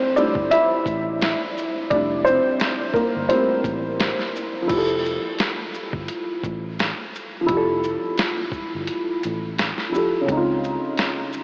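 Mellow and nostalgic, this lo-fi hip hop excerpt opens on a soft, intimate felt-muted upright piano up front, its thick-felt tone short in sustain and coloured by cassette tape, accompanying over a rootless Fmaj9 that shifts to Dbmaj9 at 10.3 seconds. A sampler-style drum kit arrives at 0.2 seconds with a muffled, compressed sound, a thumpy kick, a medium-tuned snare, hi-hat, shaker and crash, re-recorded in a large room. A round, foam-muted fingered electric bass sits low and dark beneath them, and the whole dreamy mix is soaked in a huge ambient reverb with a hazy AM radio character.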